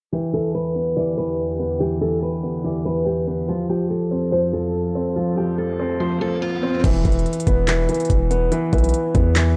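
Hip hop in a trap style, this eerie, melancholic passage is cut from a longer piece and moves with a half-time feel. It opens with a bright, picked steel-string acoustic guitar carrying the melody up front, over a dark, mellow concert grand piano whose audible action noise lends it an intimate, vintage character. Behind them, a soft, breathy pad with chorus holds sustained chords. A filter sweep runs through this opening as the harmony moves from Em7 to F, and a very quiet electronic riser slips in near its close. At 6.8 seconds the guitar and pad drop away, and a punchy, heavy 808-style bass with a fast attack arrives alongside a trap kit of knocking kick, crisp hi-hats, handclaps and crash cymbal roughened by 12-bit sampler grit, while the piano carries on over an E5 chord to the finish at 9.6 seconds. The mix sits in a digital ambience with a dry, gritty hardware sound, transformer saturation and a low-pass filter.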